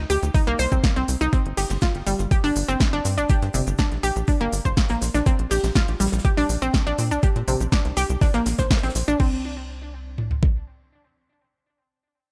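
A tight, driving sawtooth sequencer bass with tube saturation and sidechain pumping opens this expansive, dreamy progressive house drop at 122 BPM in 4/4, joined almost at once by warm, round, bright analog pluck arpeggios coloured by chorus, 12-bit sampler grit and tape echo; a layered deep house drum kit with a punchy snare, smooth pumping hats, shaker and crash cymbal; a very quiet, dry 70s kit with a fat snare; and an up-front pop kit whose overdriven, knocking kick and toms carry on to 10.5 s, while the chords move from Cm to Gm to Bb in a digital ambience before the harmony falls away at 9.2 s.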